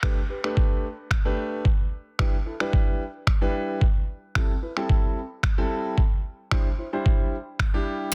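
A steady, straight four-beat pulse drives this energetic, confident dance-pop fragment, carried by a sampler-style trip hop drum kit of finger snaps and a thumpy, muffled kick that sounds pitched down and compressed, with a tape-warm character. Sitting up front beside it, a concert grand piano plays accompanying chords between G3 and C5, its tone open with a deep bass, and sidechain pumping makes it breathe against the beat. The harmony moves through Gadd9, Em7, Am7 and Cadd9. The drums stop at 7.7 seconds, leaving the piano to continue alone until 8.1 seconds. The sound is dry and close, with a dense, heavily limited modern master.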